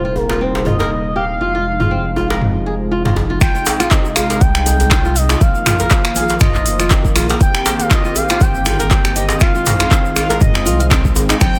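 Warm and spiritual in mood, this afro house groove moves at a steady, lightly swung pace in four, cut from a longer piece. A smooth, nasal synth lead with vibrato carries the melody over a detuned sawtooth pad holding sustained chords, while a dark, fingerpicked flamenco guitar plays arpeggios through a digital delay and a round sine sub bass anchors the low end. A tight, cracking djembe with metal rattles enters at 0.2 seconds, joined shortly after by an up-front, overdriven deep house kit of finger snaps, handclaps, metallic hats and toms. A filter sweep on the pad builds the opening until the drop at 3.4 seconds, where a deep, overdriven electronic kick arrives along with a grainy, very quiet tube shaker. The pad, guitar and bass pump with sidechain compression, and ringing congas surface in the background only at the very end, all set in a light reverb and studio ambience.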